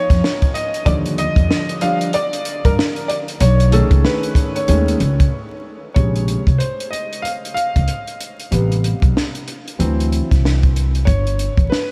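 Swung 16ths at 94 BPM in 4/4 drive this mellow, nocturnal hip hop and jazz-hop excerpt, where an up-front compact cocktail drum kit with a punchy kick, high-tuned snare and dark, rolled-off top sits beside a woody pizzicato upright bass on steel strings, while a clear, vintage upright piano with long sustain and subtle chorus solos over Db9, Ebmaj9 and B13 before moving through Bbm9, Am9 and D9 to G, with a short break at 5.3 seconds, the whole set in light small-room reverb over a bed of vinyl crackle.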